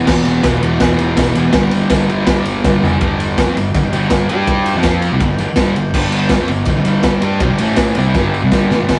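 A double-tracked fuzz guitar drives this swaggering, raw garage rock excerpt at 164 BPM in G major, its distorted, picked riff up front over power chords that move from E5 through G5, F5 and A5. A punchy, gritty acoustic drum kit with a medium-tuned snare and a pumping small-room sound sits up front alongside it, with fills at 2.6 and 8.2 seconds as the opening section gives way to the next at 3.0 seconds. A dark, round overdriven fingered bass hangs in the background and a jingly, very quiet tambourine glints faintly, all captured as a rough rehearsal-room recording with light reverb and a dulled top end.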